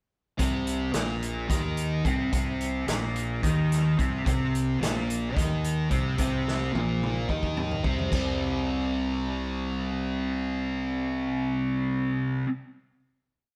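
Hazy and trippy, this short, complete psychedelic rock piece rides a straight-feel groove in 7/8. From 0.4 seconds a double-tracked fuzz guitar sits up front with a distorted, phaser-coloured octave riff over a Bbsus24 chord. A fingered electric bass, round and overdriven with its own fuzz, doubles that riff as a dotted figure in a darker, punchier register. A vintage acoustic drum kit with dark cymbals, a medium-tuned snare, a punchy kick and a warm, rolled-off top holds the odd-metre groove, then plays a fill from 6.5 seconds. At 8.1 seconds the band settles onto a final C5 chord, with the guitar and bass ringing on after the drums stop. The whole take sounds like a band playing live together in a stone room, with a moderate, natural reverb.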